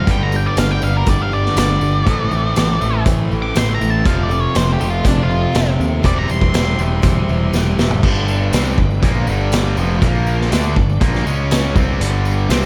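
Classic rock at 121 BPM in a straight 4/4, this confident, sunny excerpt opens with a dark octave-fuzz lead guitar soloing over G, Am, F and C/E until 6.8 seconds, backed by two bright distorted electric guitars playing a riff in the background, a round, punchy fuzz bass up front and a vintage drum kit with dark cymbals and a tight kick. A very quiet tonewheel organ holds chords through a slow rotary speaker, while a woody, boxy ladder-braced acoustic guitar picks along until 8.0 seconds and a jingly tambourine sits behind. A drum fill at 7.5 seconds leads into a second section where the harmony moves from G through Bb5 and C#5, all in a small room with light reverb.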